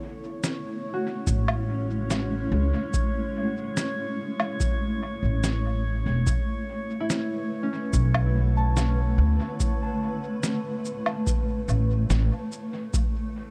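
Spacious and deep, this ambient dub passage, cut from a longer piece, floats in straight 4/4 over a slow shift from Amaj7 to Bm11 at 6.3 seconds. A cloudy, evolving granular pad holds mellow sustained chords from the first moment, blurred by detuned unison voices and its own reverb, while a glassy texture of drifting sine overtones hovers above, softened by chorus. A thumb-plucked concert harp rings out arpeggios through dub echo, and a sampler-style kit of fat, muffled snare, shaker and woodblock enters at 0.4 seconds, compressed and tape-warm, with its own echo trails in a small room. At 1.3 seconds the up-front parts arrive: a woody pizzicato upright bass carrying the low end, and a deep analog electronic kick re-recorded in a small room. The whole mix sits in light digital ambience.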